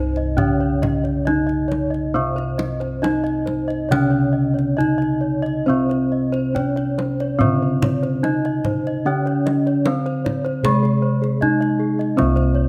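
Stately and shimmering, this Javanese gamelan passage is cut from a longer piece and moves in a straight four-beat pulse. Three bronze metallophones sound throughout. One carries the melody in the middle register, a lower one plays the accompaniment, and a quieter, higher one spins arpeggios above them. One metallophone, struck with a wooden mallet, sits up front with a boxy small-room character. Another has a horn-mallet attack and a bright edge, and a third, also wooden-mallet, is dry, full and close-miked, its paired tuning producing beating shimmer. Bossed gongs anchor the bass with a round, dark, smooth tone that beats. The kendang, entering at 0.2 seconds, adds a deep, acoustic sound captured close, all within light reverb and detailed miking.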